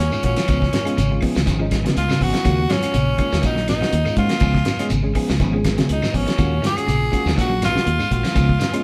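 A raspy, forceful tenor saxophone leads this intense, hypnotic afrobeat excerpt in Eb minor at 122 BPM, riding over a cloth-damped, thuddy drum kit with a fat snare, a round fingered bass, two slightly broken-up electric guitars on arpeggios and stabs, a reedy electric piano with fast tremolo, grainy shekere and very quiet woody claves, all played live in a stone room as the chords alternate between Db7 and Ebm7.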